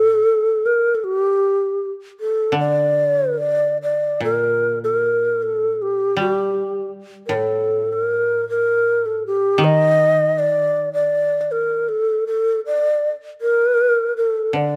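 An airy, up-front bamboo shakuhachi carries the melody with vibrato, tongued notes and breathy chiff over a bright, woody koto accompaniment plucked with fingerpicks in its low register, in a calm, austere excerpt of traditional Japanese chamber music in D miyako bushi at a loose, rubato 78 BPM, captured with close, detailed microphones and light reverb.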